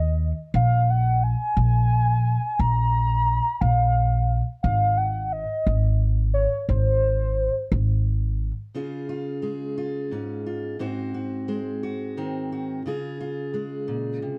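Indie folk with a building arrangement in 6/8 at 58 BPM in Db major, nostalgic and anthemic, cut from a longer piece, opening with a warbly, detuned lead carrying the melody with chorus and vibrato over a woody, thumpy pizzicato upright bass, both up front. The lead stops at 8.0 s and the bass at 8.5 s, and at 8.7 s a fingerpicked steel-string acoustic guitar with fresh strings and audible finger squeak enters as the accompaniment as the chords move from Db to Ab7 and back to Db. Light reverb and a small-room ambience frame a dark, warm production.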